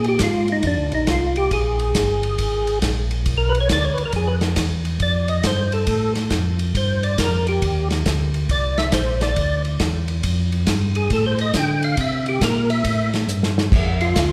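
A percussive tonewheel organ carries the melody and takes a solo from the start to 13.7 seconds, its fat, clean tone marked by third-harmonic percussion, key click, chorus vibrato and a slow rotary speaker. Beneath it, a second tonewheel organ plays the bass line with a mellow, round, dark sound, lightly overdriven and also run through chorus vibrato and a slow rotary speaker. An acoustic soul drum kit sits up front with dark cymbals, a medium-tuned snare, a tight kick and a rolled-off top, and it plays a fill from 13.3 seconds. This bluesy, swinging soul jazz organ trio moves through chords such as Bb7sus2, Bdim, Fadd9 and C9 before arriving on C7, as a short cut from a longer piece. A moderate concert-hall reverb lends the trio a spacious, church-like setting.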